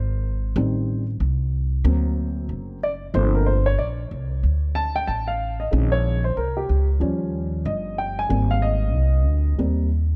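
The rhythm sits at a relaxed 93 BPM in 4/4, with a 62% swing on the sixteenths giving this hip hop fragment, cut from a longer piece, a smooth, lazy lilt. A dark, mellow baby grand piano carries the solo, playing from the start until 9.9 seconds across a range from Eb3 to A5, its intimate, vintage tone placed up front with audible action noise. Beneath it, a woody pizzicato upright bass with steel strings holds the low end from F#1 to Eb2, also up front, running until 10.2 seconds. The harmony drifts through rich jazz colours, moving from Am7b5 and Daug7 into Gm11, Bbm11 and Eb7 before settling on Abmaj9. A small room reverb wraps the pair in a close, relaxed space.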